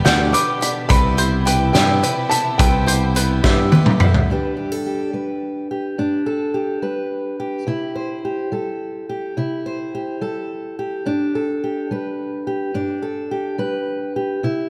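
A steady 6/8 pulse at 71 BPM, felt in dotted quarters, carries this uplifting indie folk passage in G major, cut from a longer piece, with a loose indie drum kit up front giving a fat snare and punchy kick under a rolled-off top across hi-hat and toms, topped by a drum fill from 3.4 to 4.3 seconds. A woody, intimate upright piano with audible action noise sings the melody high in its range, ringing with slapback echo and digital delay, while a picked electric bass, direct and amped, anchors the low end. Around them, a shimmering, octave-doubled twelve-string acoustic guitar sits in the background with subtle chorus, a twangy, percussive banjo played with fingerpicks spins arpeggios through echo and delay, and a very quiet chamber string section holds soft, sul tasto chords with light vibrato. The harmony moves from G to Cmaj7 in the opening, and at 4.3 seconds the fuller group gives way to a fingerpicked steel-string acoustic guitar, placed up front, which carries the passage alone over G and C chords. 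Concert hall reverb lends the whole a big arena sound.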